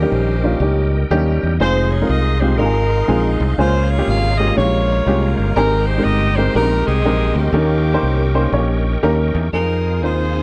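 This dry, close recording has a 1970s studio sound with little reverb and lossy compression artefacts. It is a short cut from a longer gospel piece, soulful and jubilant, moving at 121 BPM in 4/4 with a swung eighth-note feel. An edgy, tight saxophone section carries the melody up front with jazz-style vibrato. A woody, slightly detuned upright piano with short sustain provides the accompaniment, while a punchy fingered electric bass sits forward and direct beneath it. Further back, a reedy tonewheel organ holds sustained chords with key click, chorus vibrato and a slow rotary speaker, as the harmony moves through Eb7, Fm7, Db6 and Abmaj7. At 9.5 seconds a lush, bowed studio string section enters very quietly on sustained chords just before the cut at 10.4 seconds.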